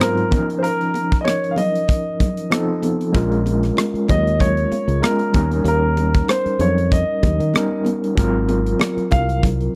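Dry and close, this short cut from a longer piece carries the small-room intimacy of a 1970s-style soul studio session, cinematic and silky in mood. A concert grand piano carries the melody in its upper-middle register, its tone intimate and natural with audible action noise and long sustain. Underneath, an overdriven tine electric piano played through a combo amp supplies barky, gritty chords with a medium tremolo, moving through a Db69 to F7, Bbm7, Eb7 and Ab13 progression. A polished acoustic drum kit sits up front with a punchy kick, hi-hat and rim click in an airy room sound, while high-tuned, ringing congas struck with hard hands add a vintage, band-limited layer in the background. At 3.1 seconds a fingered electric bass enters, bright, direct and growly, anchoring the lightly swung groove until the close around 9.7 seconds.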